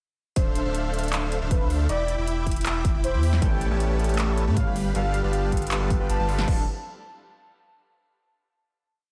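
A huge, detuned supersaw drives this emotional, lush future bass piece at 157 BPM in a half-time feel, pumping with sidechain, tape echo and gritty 12-bit sampler colour through a drop that runs from 0.4 seconds over Dm7, Em7, A9 and G7 chords in D dorian. A punchy overdriven electronic kick and a big-room dance kit with a huge snare, handclaps, metallic hat rolls and crashes sit beneath a deep, saturated sine sub bass that follows the chord rhythm. A velvety, chorused synth lead repeats a melody in the background, a bright, barky tine electric piano adds dotted-rhythm chords from 3.4 seconds, and the dreamy, reverb-soaked mix settles on a final Dm7 at 6.5 seconds.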